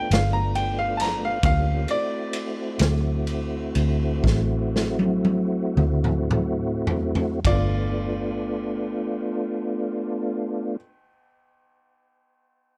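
Slow blues in a rollicking, swaggering 12/8, this short excerpt opens with a clear, woody upright piano taking a solo with audible action noise while a lightly overdriven tonewheel organ holds sustained chords through a slow rotary speaker and chorus vibrato, over a dark, round, foam-muted electric bass. A gritty, boomy garage drum kit with a pumping small-room sound plays from 0.1 seconds, with a drum fill from 4.2 to 7.4 seconds, and stops at 7.7 seconds, as the tempo slows down. The chords move from G7 to D7 and back to G7 at 7.4 seconds, in a dry, up-front mix with little reverb.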